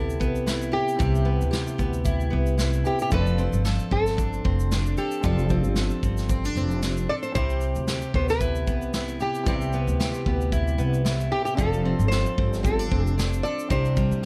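Acoustic pop at 113 BPM in C major with a light sixteenth-note swing, heartfelt and carefree, where a dark, small-bodied fingerpicked nylon-string guitar carries the melody over a shimmering, octave-doubled fingerpicked twelve-string, a very quiet felt-muted upright piano with audible action noise, a woody pizzicato upright bass up front, and a vintage brush kit with punchy kick, medium-tuned snare and shaker, all recorded close and dry as the chords move between Cmaj7 and F6 before settling on Cadd9 at 13.7 seconds in this short cut from a longer piece.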